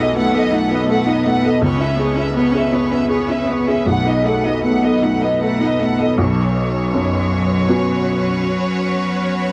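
A felt-muted upright piano sits up front in this short excerpt of neoclassical piano and strings, its soft, mellow tone giving the accompaniment an intimate feel as it moves through a low, broad range. Over it, a rich chamber violin section carries the melody with focused, bowed vibrato, while a single cello plays a smooth second line that sounds clear yet distant. Far behind them, a shimmering ambient pad holds sustained chords with an ethereal, octave-up glow, its slow attack and long release softened by chorus and built-in reverb. The music moves at 81 BPM in 3/4 with a rubato feel, drifting from B7 through C#m7 and back before settling on Bsus2 at 6.2 seconds as a new section begins. The recording itself is dry and gritty, which lends the longing, reflective mood a close, unvarnished character.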